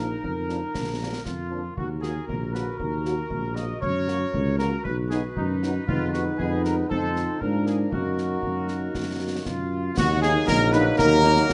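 A mellow, up-front tuba anchors this resolute, stern military-style wind band march in 2/4, where a soft-edged trumpet section carries the melody over a tight woodwind line, distant dark French horns, and close, dry concert bass drum, snare and clash cymbals with dark cymbals, while a very quiet, pure flute group with vibrato and a crisp attack enters at 9.5 seconds and a euphonium and clear trombone chords join in the background at 10.0 seconds, all in a moderate studio reverb.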